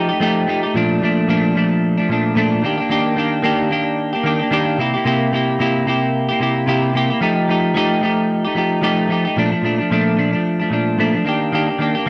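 A clean, up-front semi-hollow electric guitar plays alone from the first moment, carrying this sunny, hazy indie pop fragment cut from a longer piece. Set in Bb major at 111 BPM in 4/4, with a gentle 16th-note swing and tuning a touch below standard at A4 = 439 Hz, the picked hollow-body tone ranges from Bb2 up to G4. Analog chorus, a warbly pitch drift and a slapback echo give the guitar a dreamy, slightly wobbling shimmer. The harmony moves through F9, Bbmaj7, Ebmaj7 and C7 before circling back to F9, and a new section begins at 9.4 seconds on Bbmaj7, then reaches Ebmaj7 just before the clip ends at 12.1 seconds. The sound is dry and close, like a 1970s studio, with only a light touch of reverb.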